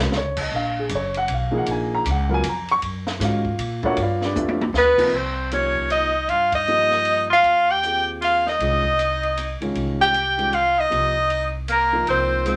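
Swung eighths in a lilting three-beat metre drive this intense, hypnotic stretch of modal jazz, cut from a longer piece. A dark, mellow upright piano with long sustain sits up front, voicing chords over a woody pizzicato upright bass with steel strings, while a compact cocktail drum kit supplies a dry, natural pulse of hi-hat, ride, crash, punchy kick, high-tuned snare, toms and dark cymbals. A drum fill at 4.4 seconds ushers in a clear soprano saxophone at 4.8 seconds, carrying the melody close-miked and up front with light vibrato, subtone and scooped notes. A tenor saxophone with a vintage edge enters alongside it, tracing a second line below with vibrato and its own scoops. The harmony settles into a brooding modal section at 5.1 seconds, and the band lands a unified accent at 6.5 seconds, all framed by the wet ambience of a small room.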